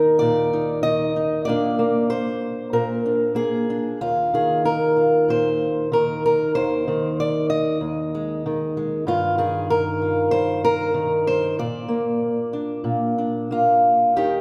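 The rhythm moves freely in a rubato 4/4 around 95 BPM, giving this short folk piece for solo fingerstyle acoustic guitar a loose, breathing pulse. It sits in Eb major, tuned slightly sharp to A4 = 441 Hz, and carries a hopeful, nostalgic mood. A single fingerpicked old ladder-braced acoustic guitar plays throughout, spanning Eb2 to Eb5 and sitting up front, its dark, woody tone colored by old strings. The harmony opens on a high Eb5 and moves through Bb, Ebsus2, Ab and Ebadd9/G before returning to Bb. A wet church reverb with a 2.4-second tail surrounds the playing, placing it in a resonant hall or church space, and the fragment is cut from a longer piece at 14.4 seconds.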